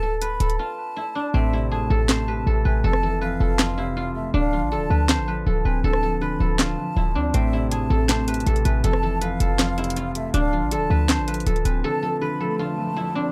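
A half-time trap groove drives this eerie hip hop piece, with a sharp snare, handclaps, rim clicks and bright, tape-warm hi-hats up front beside a punchy, tight 808-style bass built from a sine and a noise layer; the hats sit out from 1.3 s until 7.3 s. A silvery, ringing guzheng plucked with fingerpicks carries the filtered, delayed melody beneath a higher, airy flute line with vibrato and echo, and a dark, long-sustaining baby grand piano. The drums and bass fall away around 11.8 s, leaving the guzheng, flute and piano with a background electronic swell in a dry, gritty small room.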